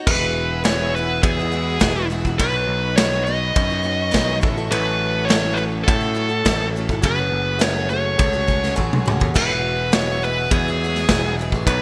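A bright, 1980s-style digital production with light studio reverb frames this jangly folk and heartland rock excerpt, where an overdriven, dark lead guitar with digital delay carries the melody up front over a boxy parlour acoustic guitar with subtle chorus and a growly picked electric bass. A vintage drum kit with gated reverb, a tight kick and a rolled-off top drives the straight 4/4 feel, while a very quiet grand piano with audible action noise and a soft, sul tasto string section in the background add chords moving from Eadd9 through Badd9, A6 and F#madd9. Near the close the piano plays a fill at 8.5 seconds and the drums add one at 8.8 seconds before the harmony returns to Eadd9 at 9.3 seconds.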